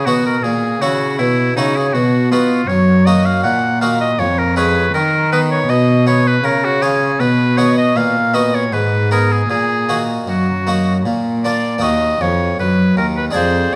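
In a flowing 3/4 at 80 BPM, this solemn baroque-style sonata movement in Eb minor sets a bright oboe melody with light vibrato over a brilliant, plucked French-style harpsichord with octave strings and a single bowed cello of rich gut-string tone, all three up front in a moderate recital hall reverb, moving from Gb7/Bb through B and Abm to a cadence on Bb before settling on Ebm as a new section begins at 11.8 seconds in this brief cut from a longer piece.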